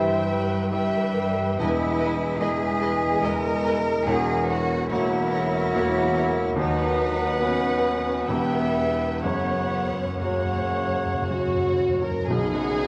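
A clear, open baby grand piano carries the lyrical melody up front in this lush romantic movement for piano and orchestra, unfolding in a rubato 3/4 at 54-76 BPM, with distant bowed violin sections sharing the melody and adding a second line, a hollow concert flute, dark clarinet and cor anglais weaving further lines in the background, mellow bassoon and soft-edged violas filling out the accompaniment, a very quiet dark French horn section holding chords, rich cellos and double basses grounding the bass, and timpani entering at 9.2 s, all set in a wet concert-hall reverb.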